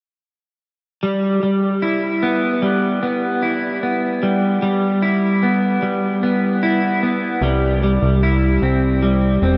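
Blissful and dreamy, this dream pop excerpt opens at 1.0 s on a twangy, slightly broken-up electric guitar playing arpeggios through lush chorus and tape echo over a G6 chord, joined at 7.4 s by a fat, detuned sawtooth analog bass on a C chord, all held in a lush hall reverb that soaks the mix.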